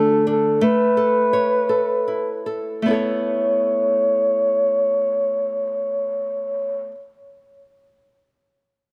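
Set in a small room with light reverb, this heartfelt, swaying excerpt of a six-eight pop ballad in A major moves at 50-58 BPM, easing its pace over the first 2.9 seconds as a dark, breathy flugelhorn sings an intimate, jazz-style solo melody up front with a soft attack, scooped notes and light vibrato over a warm, fingerpicked nylon-string guitar that moves from D to Aadd9.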